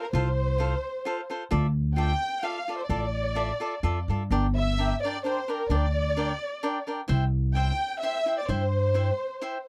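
Proud and romantic, this short cut from a longer mariachi piece moves at 129 BPM in a lilting 3/4 with a light swing on the eighth notes. A dark symphonic violin section carries the melody up front, its lush bowed ensemble tone shaped by vibrato, soft attacks and expressive portamento. A bright, crisp picked cavaquinho, also up front, supplies the accompaniment. Underneath, a pizzicato upright bass on gut strings gives a woody, thumpy low end, entering at 0.1 seconds and stopping at 9.1 seconds. The harmony moves from F through D minor add nine and G minor to C, and the dry, close studio sound recalls a 1970s session.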